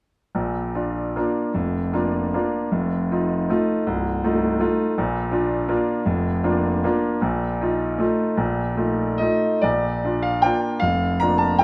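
A bright concert grand piano plays alone in a playful, graceful classical waltz fragment in Bb major, moving in a rubato 3/4 between 132 and 171 BPM. Its brilliant tone, deep bass and long sustain sit up front through close, detailed microphones in a moderate recital-hall reverb, as the harmony rocks between Bb and F7 before a new passage arrives at 9.6 seconds and the clip ends at 11.6 seconds.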